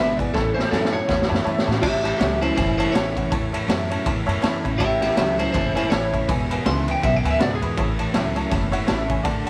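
Set in a lightly reverberant studio, this upbeat, rollicking rockabilly excerpt swings gently as a gritty, small-room drum kit with a boomy kick and high-tuned snare kicks off with a fill from 0.3 to 1.8 seconds, under a woody, thumpy pizzicato upright bass, a dark, compressed electric guitar riff colored by lush chorus, a full-bodied picked dreadnought acoustic guitar, and a detuned, jangly honky-tonk upright piano, while an up-front, twangy, slightly broken-up lead electric guitar with vibrato and tape echo carries the melody until 7.9 seconds.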